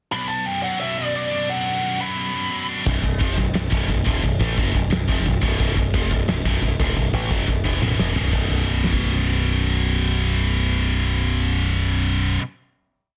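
A scooped, double-tracked high-gain guitar opens this aggressive, heavy metal piece in B minor at 176 BPM, playing picked arpeggios under a warm, distorted lead guitar that states a short hook-phrase motif in the opening seconds. At 2.9 s a growling, overdriven bass enters, driving eighth notes that double the power-chord riff, while a dark, big-room drum kit settles into a half-time metal groove with a punchy kick and fat snare. After a drum fill, the band lands on a sustained final B5 chord at 8.3 s, all within a dense, heavily limited modern master.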